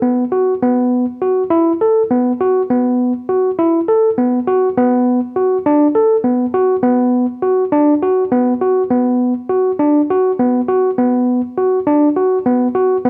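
An overdriven tine electric piano plays alone and up front, its gritty tone pushed through a combo amp and caught by close, detailed microphones with light reverb, as this restless, hypnotic contemporary instrumental passage, cut from a longer piece, moves in an uneven 7/8 with a straight feel through two sections, the second arriving at 6.8 seconds and running to 13.1 seconds.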